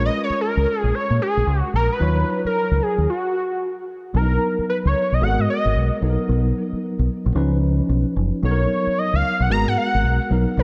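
Moderate, lush hall reverb surrounds this dark, slick, punchy R&B excerpt in new jack swing style at 112 BPM with a swung 16th feel, where a thick, bold, detuned sawtooth unison lead with vibrato and portamento carries the melody up front, a worn, slightly out-of-tune tine electric piano with light overdrive supplies the chords, and a round, amped deep dub fingered electric bass anchors the low end, before a stop from 3.1 to 4.1 seconds gives way to a section moving through Bmaj7, G#m9 and C#9.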